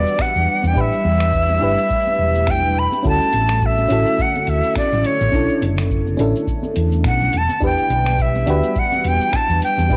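A soft haze of cassette tape and light reverb colors this short home-recorded cut from a longer sunset chillout piece, smooth and sunny at 105 BPM with a lazy sixteenth-note swing. Up front, a breathy, bright jazz flute carries the melody between C#5 and B5, close-miked and expressive with vibrato and a soft attack, trailed by analog delay. Beneath it, a mellow FM electric piano comps with a round, decaying tone through chorus, phaser and tape echo, while an ethereal, detuned pad sits in the background, sustaining chords under ensemble chorus and its own reverb. A round, punchy hollow-body bass anchors the low end, joined at 0.2 seconds by a deep, tape-warmed electronic kick and very quiet, ringing congas played with soft hands. A gritty, overdriven sampler-style kit of finger snaps, hi-hat and shaker adds dusty texture as the harmony drifts from Em9 through A9sus4, Dmaj9 and Bm11 before returning to Em9.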